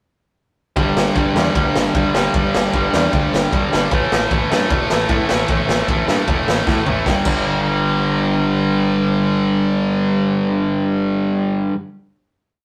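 A straight 4/4 pulse at 152 BPM drives this short, rowdy punk rock piece. A raw garage drum kit plays a two-step groove from 0.8 s, with a punchy kick, a medium-tuned snare, dark cymbals and toms in a small, pumping room, gritty and up front with a rolled-off top. Two distorted electric guitars drive eighth-note power chords through G5 and A5. The tight one is bright and forward, while the other sits compressed in the background. A growling picked bass, overdriven and amped, adds driving eighth notes underneath. A drum fill at 6.7 s leads into a final G5 chord at 7.1 s, and the drums stop at 7.4 s while the guitars and bass ring on to 11.7 s in the rough rehearsal-room sound with moderate reverb.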